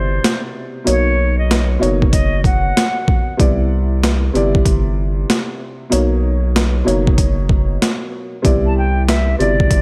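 A swung sixteenth-note groove in 4/4 drives this nostalgic, soulful boom-bap hip-hop passage, cut from a longer piece, with the sampler-style drum kit arriving at 0.2 seconds. The kit sits up front, gritty and pitched down, with a thumpy kick, a high-tuned snare and hi-hat, overdriven and compressed with the air of a large room. Beneath it, a deep, thick saturated sub bass holds a sustained low line. A dark upright piano, woody and worn, boxy and slightly detuned, with audible action noise and a cassette-tape character, carries the harmony as it alternates between Cmaj9 and Bmaj9. A distant silver concert flute with a pure metal tone, vibrato and a tongued attack voices the melody through a digital delay until 3.4 seconds, then returns at 8.7 seconds. A light digital reverb gives the whole mix a gentle sense of space.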